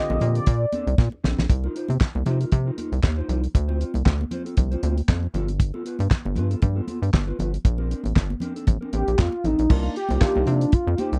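Danceable and funky, this short cut of early-eighties boogie funk moves at 117 BPM in 4/4 with a light sixteenth-note swing, sitting in C dorian over chords such as Bbmaj9, Cm7, G9 and Cm11. A damped 70s drum kit leads the mix with a fat snare, tight kick, hi-hat, handclaps and crash cymbal, carrying a vintage 12-bit sampler grit, and it breaks into a fill at 1.0 seconds. Underneath, a rubbery square bass bounces up front with a hollow, nasal pluck, while a dark, clean electric guitar plays a fingered riff through lush chorus and bright, high-tuned congas patter softly in the background. A velvety synth lead with chorus and vibrato sings the melody, heard briefly at the start and again from 8.9 seconds, and a barky tine electric piano, lightly overdriven through a combo amp, adds short accompaniment at the opening and near the end. The sound is dry and close, in the manner of a 1970s studio with little reverb.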